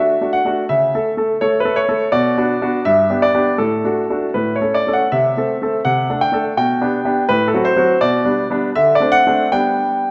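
Bathed in the lush reverb of a recital hall, a clear, polished, up-front concert grand piano with a deep bass and short sustain plays this cheerful, graceful classical-period sonatina alone in 2/4 at a rubato 76-84 BPM, moving through chord changes from D and B minor before settling into G major from 5.1 s and resolving on G at 9.5 s in this brief cut from a longer piece.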